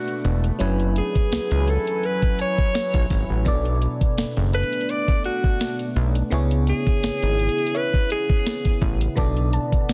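A forceful, jazz-style alto saxophone with light vibrato, scooped notes and delay carries the melody from 0.0 to 8.8 seconds in this longing, moody contemporary R&B excerpt at 84 BPM in B dorian, set over a thick, detuned sawtooth analog bass, a trap drum kit with knocking kick, sharp snare and bright hats, a glassy, bell-like FM electric piano with chorus and phaser, a deep, warbling ambient pad with built-in reverb and sidechain pumping, and a very quiet, round pluck, inside a dense, heavily limited modern master.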